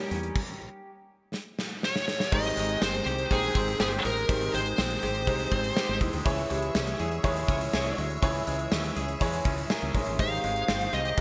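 1980s-style pop with a nostalgic, romantic mood, this excerpt from a longer piece opens with a clear concert grand piano, a twangy clean electric guitar riff sitting in the background with analog chorus, a growly, round fretless bass, and an up-front gated drum kit with bright cymbals, a tight kick and a medium-tuned snare. A drum fill at 1.3 seconds leads into the next section at 2.3 seconds, where a shimmering, vintage string machine of violins adds very quiet sustained chords, and a very quiet, jingly tambourine, close and dry, joins shortly after. A distorted, high-gain lead guitar carries the melody up front with delay, first entering at 1.8 seconds and returning near the close. A horn section with vibrato and a smooth top punctuates the music with brief, tight stabs in the background. In the middle, a buzzing marimba struck with hard mallets plays a dry, woody second line through delay. 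A lush hall reverb and bright digital production wrap the whole track in a polished period sheen.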